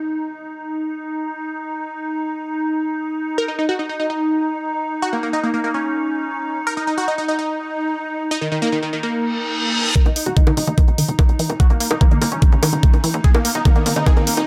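This psychedelic trance excerpt opens on an evolving wavetable pad, a morphing, warbling sine-based wash with a slow attack and long release, brightened by chorus and its own reverb and pumping against the sidechain, while a brief background sound effect flickers at the very start. A filter sweep moves across the pad through the first 10 seconds, and from 3.4 s a punchy, detuned supersaw stab comes up front with the melody, treated with phaser, low-pass filtering and dub echo. A reverse cymbal and riser sit in the background from 9.3 s, leading into a build-up at 10.0 s where the drums arrive at 146 BPM: a knocking, overdriven kick placed up front, plus bright, overdriven electronic hi-hats and bongos. A lush unison pluck riff with sidechain pumping and dub echo joins alongside a tight, nasal sequencer bass built from sawtooth and square waves, driving and punchy with a fast attack. Filter sweeps move over a synth arpeggio and the supersaw through this build, and a drum fill from 13.2 s pushes the hypnotic, intense energy forward within a light reverb.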